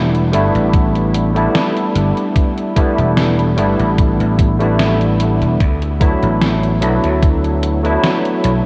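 A barky, clean tine electric piano sits up front in this nostalgic, faded vaporwave excerpt, its chords colored by ensemble chorus and delay as they move from A9sus4 to D6 at 5.6 seconds. Beneath it, a growly, punchy slap bass with tube saturation holds the low end, also placed close and present. A gated 80s digital drum machine supplies hi-hat and snare with gated reverb, sounding re-recorded in a large room. A thumpy electronic kick drum joins at 0.7 seconds and drops out at 7.4 seconds. The tempo is a slow 74 BPM in 4/4 with a light swing on the sixteenths. The whole mix is dreamy and soaked in a huge ambient reverb, with a cassette tape haze over it.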